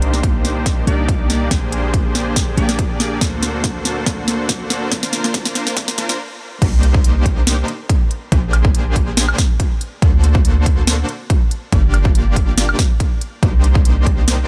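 Bittersweet and lush, this future bass excerpt in C minor at 141 BPM moves at a swung half-time feel, with a huge, detuned supersaw riff under sidechain pumping, a filter sweep and dub echo riding over a deep, boomy 808-style bass, while a crisp trap kit with a sharp snare, woodblock and crash and a punchy, tape-touched electronic kick drive a build-up and drum fill, the fill giving way to a stop at 6.2 seconds before the drop lands at 6.6 seconds over Cm9, Bb13, D7b13 and Gm7 chords.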